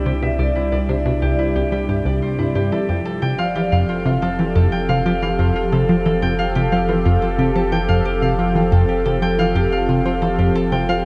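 Expansive and cosmic, this ambient excerpt moves at 90 BPM in a straight 4/4, set in F major with tuning at A4 = 444 Hz. A swirling, airy analog pad holds sustained chords with a slow attack and long release, its detuned sawtooth tone given a nasal edge and a noise layer, and colored by phaser, chorus and shimmer reverb. Up front, a ringing concert harp plays fingerpicked arpeggios, softened by a low-pass filter and trailed by analog delay and shimmer reverb. Entering at 0.1 seconds, a tight, driving sequenced synth riff blends sawtooth and square waves with a detuned filter pluck, treated with chorus, phaser and analog delay, while a deep, round sine sub bass anchors the low end. The harmony moves from Cadd9 to Fadd9 at 2.7 seconds, all within a dark production steeped in a huge, wet reverb with an 8.6-second decay.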